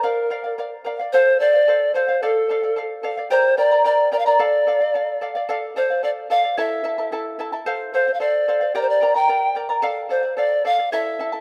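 A pure, woody pan flute with bright chiff, a crisp attack and vibrato carries the melody from the first moment, close-miked and up front, over a shimmering, fingerpicked acoustic charango whose double strings, some doubled at the octave, sit equally forward. This wistful, melancholic Andean folk piece moves at 110 BPM in a straight 2/4 in D minor, cycling through Bb, F, Dm and Gm before a new phrase begins at 5.5 s and passes through A. A moderate plate reverb with a long tail surrounds this rough home demo mix, and the passage is cut from a longer performance.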